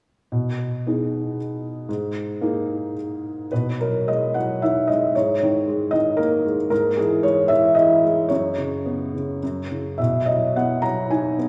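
A felt-muted upright piano plays alone in this relaxed, sunny classical excerpt, its soft, boxy, intimate tone sitting up front with audible action noise, moving in 3/4 with rubato through gentle chords that settle on B at 10.0 seconds, all bathed in a wet concert hall reverb.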